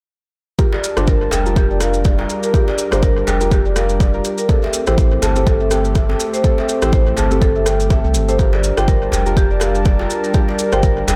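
An echo-heavy mix bathed in spring reverb gives this short afro house cut from a longer piece a spiritual, warm feel. An overdriven, layered electronic kick sits up front, joined from 1.0 s by a round, deep sine sub bass with a fast attack and a very quiet overdriven rim click. A close-miked marimba played with medium hard mallets spins arpeggios through 12-bit sampler grit, dub echo and a filter sweep, pumping against the kick. Beneath it, a smooth, detuned sawtooth pad with a slow attack holds sustained chords in chorus, while a soft, dark chord stab with a fast, decaying attack sits in the background with chorus and analog delay. A tight, cracking djembe played with soft hands sounds distant in a large room, and grainy, mellow maracas add close-up texture, both trailing analog delay as the harmony moves from Gm7 to Am7 at 4.5 s and back to Gm7 at 8.4 s.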